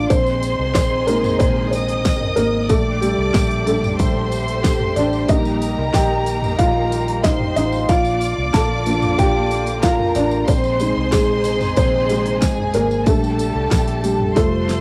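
A felt-muted upright piano sits up front and carries the lead throughout, its soft, mellow tone thick with felt and edged by audible action noise, in this hopeful, anthemic piano-driven pop passage cut from a longer piece. A lush violin section adds a smooth, even second line above sustained chords from a background string section with expressive vibrato and portamento, with all three given cassette tape character and plate reverb. Underneath, a dark, foam-muted electric bass and a layered pop drum kit with a punchy kick, fat snare and crisp hats hold the groove alongside a jingly background tambourine, and the drums close with a fill at 14.4 seconds.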